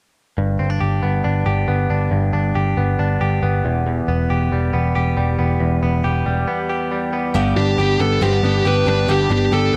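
Indie pop at 138 BPM in G major, bright and breezy, this excerpt opens with a twangy, scooped clean electric guitar playing arpeggios through spring reverb over a round, foam-muted vintage bass, moving from G to Em before a break at 6.5 seconds. At 7.3 seconds the music returns to G as a full-bodied steel-string acoustic guitar adds picked accompaniment, and at 7.6 seconds a dark, high-gain lead guitar with distortion takes the melody up front. A light reverb sits over the mix.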